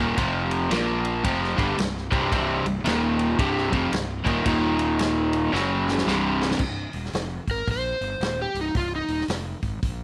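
An up-front, double-tracked overdriven electric guitar drives this heavy, smoky blues rock and southern rock excerpt in C minor at 112 BPM with a swung 4/4 feel, picking a low riff through power chords on F, Bb and C before dropping out at 6.6 s after a drum fill. A growly, fuzz-laden fingered bass holds down the bottom beneath a natural-sounding vintage kit with a tight kick and a rolled-off top, all in light reverb. From 7.5 s a fingered slide guitar, overdriven and up front, takes a brief solo phrase over the C minor groove.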